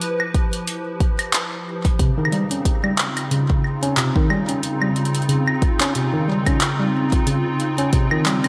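A lightly swung 16th-note groove from a booming analog drum machine, with metallic hi-hats, handclaps and woodblock doubled by slapback echo and delay, is joined at 0.3 s by a deep, up-front electronic kick in this playful, wistful IDM fragment cut from a longer piece. A hollow, flute-like pad holds soft, detuned chords that warble under ensemble chorus. At 2.0 s, as the harmony shifts from Fmaj7sus2 to Dbmaj9, a worn, slightly out-of-tune electric piano enters with lightly overdriven, delayed arpeggios that sound as if played through built-in speakers, all set in a lush hall reverb with a big arena sound.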